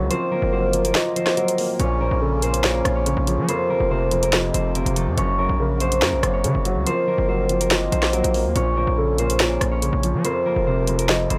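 This is a menacing, dark drill hip hop excerpt in Bb minor at 142 BPM, with a half-time 4/4 feel, cut from a longer piece. A ringing, fingerpicked concert harp carries the melody through a low-pass filter. Behind it, a hollow, woody clarinet-like synth lead adds a soft second line with vibrato, chorus and tape echo, while a felt-muted upright piano gives intimate, short-sustain accompaniment with audible action noise. A reedy, nasal hand-pumped harmonium breathes sustained chords in the background. Up front, a heavy, saturated 808-style bass hits with aggressive distortion, and an electronic drill kit enters at 0.1 seconds with a sharp snare, rim clicks and warm hats. The harmony cycles through Ebmadd9, Bbmadd9, Fsus4 and Gb, and the dry, gritty recording sits in a small room.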